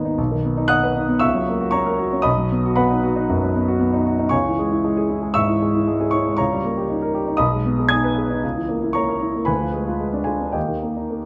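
A warm grand piano plays alone from the first moment to the close at 11.3 seconds, sounding smooth and up front with a slightly vintage character. This is a classical virtuoso piano study, passionate and agitated, moving at about 116 BPM in 4/4 with a flexible, rubato feel. The playing covers a broad span of the keyboard, from G#1 down low to G#6 up high, and the instrument is tuned to A4 = 439 Hz. The harmony opens on B and F#7/C#, turns to C#m and D#7/C#, then darkens through G#m/B, A#dim/C# and Ddim7 before arriving on D#. Close, detailed microphones and light reverb keep the piano intimate and clear in this short excerpt cut from a longer piece.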